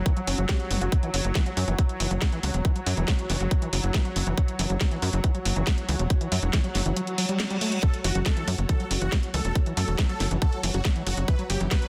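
A tight, up-front electronic kick drives a straight pulse in this alien, hypnotic psychedelic trance passage, with a garage drum kit adding a cracking snare and warm hats, both drum parts re-recorded in a small room. Beneath them a punchy sequencer bass of sawtooth and square waves with ring modulation plucks out a driving low line. A squelchy, gritty acid bass riff sits further back, distorted and resonant, pumping and trailed by tape echo. Sustained chords come from a bubbling texture of detuned sawtooth with random filter steps, chorus and built-in reverb, while a very quiet, veiled string section plays muted and bowed. A background reverse cymbal enters at 7.1 seconds, and from 7.8 seconds a huge, thick unison supersaw lead enters, compressed and pumping, coloured by phaser, vibrato and dub echo, all within a dense, heavily limited modern master with light digital ambience.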